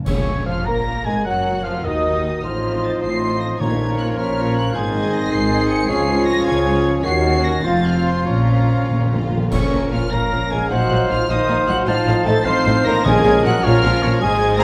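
Dramatic and restless, this fast romantic orchestral passage in Bb minor unfolds in a rubato 6/8 at 102 BPM, with a lush, distant violin section carrying the high melody over flute, oboe and a second background violin line, while viola, cello and double bass sections and a dark bassoon (until 9.3 s) fill the lower parts, mellow French horns (from 0.7 s) and quiet bright trombones hold chords, trumpets add stabs, and hard-mallet timpani, dark clash cymbals, bass drum and cymbal swell punctuate the opening accent and a timpani fill at 8.3 s, all bathed in a wet scoring-stage reverb.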